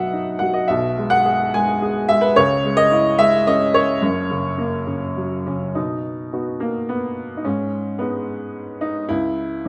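A dark, warm production places a clear, woody upright piano up front inside a moderate concert hall, its reverb lingering for about 1.9 seconds. This is lyrical classical solo piano in B major, relaxed in mood, moving in 3/4 at 108 BPM with a rubato feel. The single piano carries everything from 0.0 to 9.7 seconds, its open tone spanning F#1 up to G#5. The harmony begins on B, colors it with Eadd9 over a B bass, then passes through C#m and F# before a new section starts at 5.8 seconds, returning to B and moving on through G#m to C#m. Cut from a longer piece, this brief passage feels relaxed and warm.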